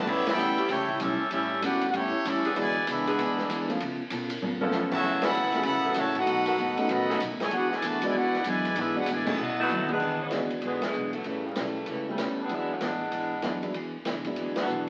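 Heard through the crackle of a very old 78 rpm record and a wet studio reverb, this joyful, energetic big band swing passage opens with a brilliant, up-front trumpet section carrying the melody. Behind it sit a tight trombone section and a smooth-topped, mellow saxophone section holding sustained chords, over a woody pizzicato upright bass, a dark, clean hollow-body electric guitar, a deep-bassed concert grand piano and a distant, roomy drum kit with dark cymbals and a boomy kick, while band accents and short drum fills punctuate the phrases. At 9.6 s a warm saxophone section with light vibrato enters on the melody, and the trumpets and trombones stop at 9.9 s.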